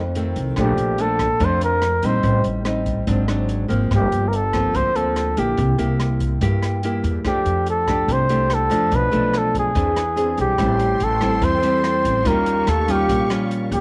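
Sophisticated and romantic, this bossa nova excerpt moves at 144 BPM in a straight 4/4. A small, fingerpicked nylon-string guitar sits up front over a woody, growly pizzicato upright bass and a dark, smooth jazz kit of hi-hat, boomy kick and rim click, while a close-miked flugelhorn enters at 0.6 s with a soft attack, light vibrato and scooped notes across chords such as Bbmaj7, Ab7#11 and E7b13. A very quiet, biting cello adds a second line from 10.4 s, and a lush symphonic string section follows at 10.6 s with sustained chords, the guitar, drums, horn and strings carrying a cassette-tape tint inside light studio reverb.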